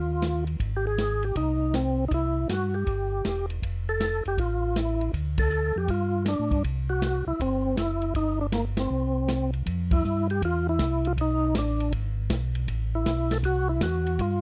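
A fat, lightly overdriven percussive tonewheel organ carries the melody with key click, second-harmonic percussion, chorus vibrato and a slow rotary speaker, over a round, dark second organ holding down the bass line through its own slow rotary and chorus vibrato. This soulful, bluesy soul jazz organ trio swings in 4/4 at 159 BPM in C major, with a polished, airy big-band drum kit of hi-hat, ride, medium-tuned snare and punchy kick, and the band hits accents at 5.3, 8.7 and 9.9 seconds. The sound is dry and close in a 1970s studio style, with the two organs up front and a shift into a new section near 9.7 seconds before this cut from a longer piece ends.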